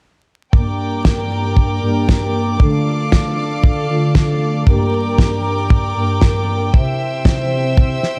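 A straight 4/4 italo disco groove at 116 BPM in G dorian is driven by a dry, tight acoustic kick sitting up front from 0.5 seconds, joined at 1.0 seconds by a fat, rolled-off snare, while the chords move through Gm, Dm, Gm and C. Mellow sawtooth synth brass stabs, round and brassy with chorus, ring modulation and a filter sweep, sit forward over a distant, earthy chamber string section holding bowed sustained chords with light vibrato. The danceable, melodramatic passage, cut from a longer piece, has a dark production with light reverb, small room ambience and vinyl crackle.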